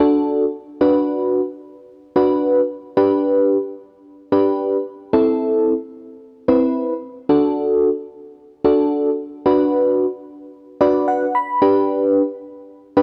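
Pop in a nocturnal, melancholic mood, carried by a lone mellow FM electric piano with a soft, round, dark tone and chorus, sitting up front in a dry, gritty recording with light reverb as it moves through D, Bm, G and Amadd9 and adds a short fill at 10.5 seconds.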